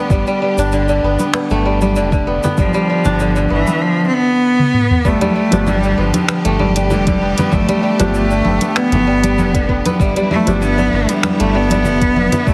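Organic downtempo in a straight four, this short excerpt feels peaceful and unhurried, built on an up-front, fingerpicked kora whose crisp, ringing arpeggios trail off into digital delay. A round, sine-like sub bass and a soft, tape-saturated electronic kick sit underneath, joined by a produced kit of finger snaps, shaker, toms, congas and crisp hi-hats, while separate acoustic congas ring close and dry further back. At 2.6 seconds a single bright cello takes the melody, close and intense, with a biting, nasal tone, airy bow noise and vibrato, also echoed by digital delay. A drum fill at 4.6 seconds leads into the second section, where a felt-muted upright piano enters at 5.5 seconds with soft, intimate accompaniment and audible action noise, pumping with the sidechain alongside the bass and a lush, bowed string section holding sustained chords behind it. The whole mix sits in a moderate echo-chamber reverb and carries a heavily compressed, radio-like sound.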